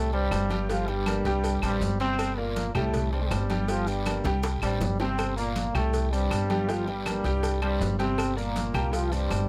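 A punchy trombone section leads this fiery, danceable salsa cut from a longer piece, its tight, up-front melody carrying light vibrato over a brilliant, long-sustaining upright piano and a woody pizzicato upright bass, all in G minor at 160 BPM. Underneath, the harmony alternates between Csus2 and G minor chords, while a dense percussion bed of congas, high-tuned compressed bongos with cowbell, ringing agogo bells and timbales, vintage-sounding claves, a raspy guiro and grainy, distant maracas drives the 4/4 groove. A drum fill from 4.3 to 5.2 seconds breaks up the pattern, and the dry, close-miked sound keeps the mix crisp and detailed.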